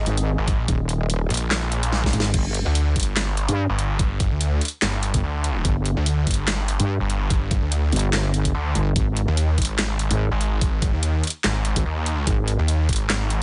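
A faint, lush supersaw pad and a growling, snarling distorted saw bass open this menacing, heavy half-time wobble dubstep excerpt, with the pad dropping out at 2.3 seconds after a drum fill, leaving the saturated, chorused wobble bass, the overdriven knocking electronic kick, and an up-front, tape-toned dubstep kit of huge snare, metallic hi-hats, handclaps and crash cymbal to pound on with a swung feel in a dry, close mix.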